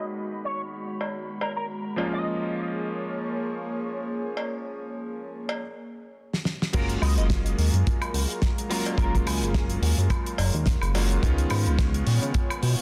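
Feel-good and groovy, this nu-disco cut in F# major moves at 107 BPM with a light 16th-note swing, opening on a clangy, clear electric grand piano and a lush, detuned sawtooth pad with chorus and sidechain pumping, both under a filter sweep, while a twangy, bright guitar with envelope filter, ensemble chorus and tape echo plays the melody and a band-limited cowbell joins at 1.0 seconds. After a drum fill at 6.3 seconds, the drop arrives at 6.7 seconds with a tight, dry kick, a damped 70s kit with a fat snare and dark cymbals, and an up-front, glossy synth bass with chorus and tube saturation. The chords move from G#m7 and A#m7 to F#maj9 and finally C#7 in a dense, heavily limited mix with light small-room reverb.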